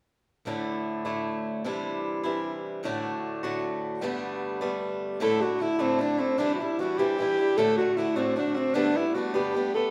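Heard in a wet recital-hall reverb, this bright, cheerful Celtic folk passage, cut from a longer piece, moves at 102 BPM in a straight 6/8 in D mixolydian, with an up-front, boxy, fresh-stringed acoustic guitar picked in a swing style cycling through Dsus2, Cadd9, D and Gadd9 from 0.5 s, before a warm alto saxophone with vibrato and a smooth top enters at 5.2 s to carry the melody as a classical-style solo placed equally close.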